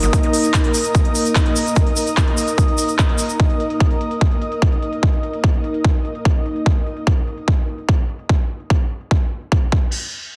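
Intense and psychedelic, this brief psychedelic trance cut runs at 147 BPM in a straight 4/4, driven by a punchy, up-front electronic kick that enters at 0.1 s and a layered big-room dance kit of crash cymbal, handclaps and crisp hi-hats, both tape-warm and re-recorded in a large room, with low-pass filtering on the kit's hats, snare, cymbals, percussion and room. Over this, a resonant sawtooth-and-sine drone with moving overtones holds sustained chords from Eb4 to Eb5 through chorus, phaser and sidechain pumping, while an ethereal, airy pad of detuned unison voices and a sub octave spans Bb3 to Eb6 with ensemble chorus and pumping of its own, both ending at 6.7 s. A grainy, bright acoustic tube shaker adds saturated texture until 3.4 s, all within a dense, heavily limited modern master with light reverb.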